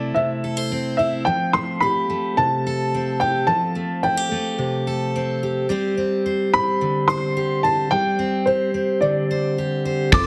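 Bittersweet and stirring, this indie folk piece moves at a steady, straight pulse in four, its arrangement poised to build. For the first ten seconds a dark, mellow upright piano carries the melody up front, its woody, slightly detuned, boxy tone clipped short and touched with slapback echo, over a bright, full-bodied fingerpicked steel-string guitar whose fresh strings let a little finger squeak through. The harmony moves from Am/C to Fadd9 and then settles on Gsus4. At 10.1 seconds the band arrives all at once: a shimmering, octave-doubled twelve-string played with a pick sits in the background, a vibraphone struck with hard mallets rings with metallic vibrato and its own slapback echo, a pizzicato upright bass adds a woody low end, and a natural country drum kit in a small room brings a punchy kick and medium-tuned snare. Light reverb surrounds the dense, heavily limited modern master, and the excerpt cuts off just as this fuller arrangement begins.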